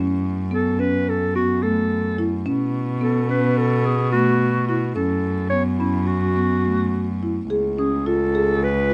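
Contemporary chamber music in an urgent, restless 9/8 at 216 BPM in F# minor, with soft-mallet marimba arpeggios sounding woody and round, a bowed sul tasto cello giving an airy, intimate bass line, and a breathy clarinet carrying the melody with subtone and scooped notes from 0.5 seconds, all captured close and dry as the chords move from F#m through B5 to C#7 in this brief cut from a longer piece.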